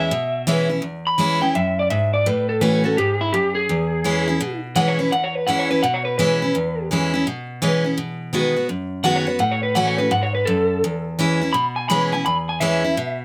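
A light reverb surrounds this rowdy, retro rock excerpt at 168 BPM in E major with a swung feel, where a twangy, slightly broken-up electric guitar through a small old amp carries the melody with vibrato and tape echo, dropping out between 6.9 and 9.0 seconds, over a full-bodied, picked steel-string acoustic guitar playing sixth chords up front from start to finish.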